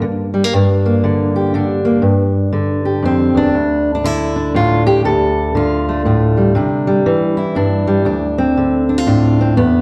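A wet recital-hall reverb, about 1.4 seconds long, surrounds this short folk fragment, cut from a longer piece. A single fingerpicked steel-string acoustic guitar sits up front and carries everything, from low D2 up to A4, with a slapback echo trailing its notes. The mood is intimate and wistful, in D minor at 119 BPM in a lilting 3/4 with a swung eighth-note feel. The harmony moves from Gm to Dm at 3.5 seconds, then through Cadd9 to a closing Dm7 at 8.1 seconds, with the guitar ringing until 9.8 seconds.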